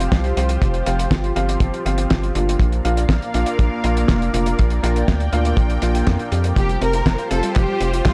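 Sunny and romantic, this short italo disco excerpt rides on a tight, dark kick and a damped 70s kit of handclaps, hi-hat and fat snare, with a round, deep analog bass up front, clangy vintage electric grand piano stabs until 6.8 s, and a lush, bright unison pad with chorus and phaser holding an Fsus2 chord, before an expressive, vibrato-rich violin section with tape echo and a soft, mellow pluck playing arpeggios in the background both enter at 6.6 s, captured in a dry, gritty small room.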